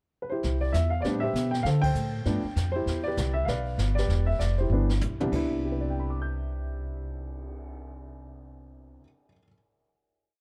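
The upright bass stands out in this short, sophisticated jazz piano trio piece, a woody, growly pizzicato walking line played up front at a swinging 196 BPM in C major, moving through C, Am11, D5, G7 and Cmaj9. The piano enters alone with a pickup at 0.2 seconds, offering hook-like motifs and syncopated, rootless comping, while the brush kit sweeps the snare beneath dark cymbals, hits a band accent at 1.8 seconds and plays a fill into a final chord at 5.3 seconds. Light reverb and a dark production give the small-room trio an intimate, natural glow, with the piano ringing on until 9.5 seconds.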